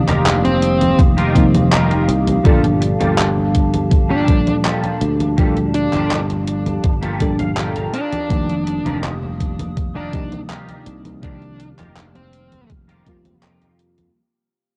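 This nostalgic, woozy vaporwave fragment at 82 BPM brings together a detuned 8-bit drum machine's congas, handclaps and hi-hat, a growly, punchy fretless bass, a soft, round FM electric piano with chorus and delay, a warbling, lo-fi pad of detuned square and triangle tones, a bright, clean picked guitar riff with a fill at 6.8 seconds, and a dark, overdriven lead guitar melody with gritty sampler texture and tape echo. A thumpy, up-front electronic kick joins at 1 second, and everything drifts between F9sus4 and Gm9 in a light, cassette-tinged room as the music fades out from 2.5 seconds onward.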